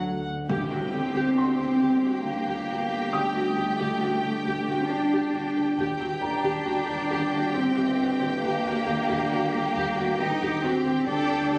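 Captured on a phone in a reverberant club-like room, this eerie, ominous suspense cue moves slowly at 68 BPM in 3/4, with a rich, vibrato-laden violin section carrying a smooth melody over a second violin line, a focused viola section and an up-front cello section. A dark, lush double bass section and a warbling, chorused analog drone sit beneath, while a mellow felt-muted upright piano adds soft, intimate texture in the background. A huge, bright impact lands at 0.5 seconds beside a very quiet, saturated taiko ensemble, and the harmony shifts from Dsus4/G to Eb/G at 5.8 seconds before returning.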